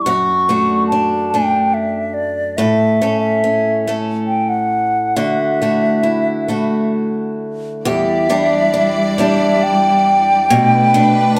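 A moderate recital-hall reverb surrounds this haunting, longing Celtic slow air, cut from a longer piece and moving at 69 BPM in a rubato 3/4 with uneven beats in E dorian. A hollow, pure wooden flute carries the melody with tongued notes and vibrato over an up-front, boxy, picked acoustic guitar whose old strings give it a woody tone. At 7.8 seconds a bright, intense bowed string section enters close with sustained chords and its own vibrato, and it holds until the close at 11.4 seconds.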